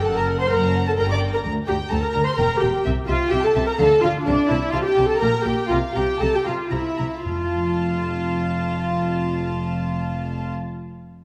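Graceful and lively, this quick classical-period orchestral passage in 3/4 and F major moves at 109-130 BPM with a rubato feel: a distant, floating violin section carries the melody over a smooth-topped second violin line, an up-front, rich viola accompaniment and a foundation of warm cellos and close, warm double basses, with the strings bowed sul tasto with soft attacks in moderate scoring-stage reverb, easing into a slowdown from 3.6 to 7.3 seconds before articulate, hard-mallet calf-head timpani enter in the background at the arrival on F.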